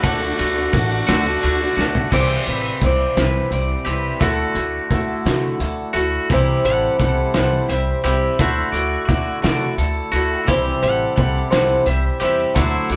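Jangly and hopeful, this short folk rock and heartland rock passage rolls along in a slow 6/8 with a band playing live together in one room, wrapped in moderate studio reverb. A picked twelve-string acoustic guitar shimmers with octave-doubled strings and a boxy archtop body, finger squeaks audible, while a bright, twangy electric guitar plays a clean, compressed riff alongside it. Pizzicato upright bass adds a woody bottom, and a cloth-damped drum kit sits up front with a muffled, gritty, saturated sound, dark cymbals, a fat snare and a tight kick. A close, jingly tambourine sits in the background for the opening seconds and returns near the end. After a drum fill, a clean pedal steel guitar, played with fingerpicks and slide and shaped by volume swells, takes a solo from 2.1 seconds over chords moving between D, C and Dadd9, carrying the piece to the 13.0-second cut.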